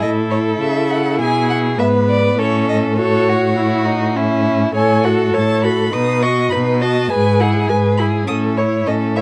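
All four players of a string quartet begin together at once, opening this lively, cheerful classical-period movement at a quick 102 BPM in a straight 4/4. The top violin carries the melody with a clear, smooth and even bowed tone touched with vibrato, set back at a slight distance. Beneath it, the second violin plays a focused second line, while the viola adds accompaniment with a soft attack, expressive portamento and a close presence. The cello anchors the bass up front, its bowed vibrato and sliding portamento lending it an expressive weight, and these three lower voices share a rich, full timbre. The harmony moves from A through E7, settling into E major from 4.7 s with F#m/A, B, E/G# and back to A, all held in a dark, warm production with light reverb across this 9.2-second cut from a longer piece.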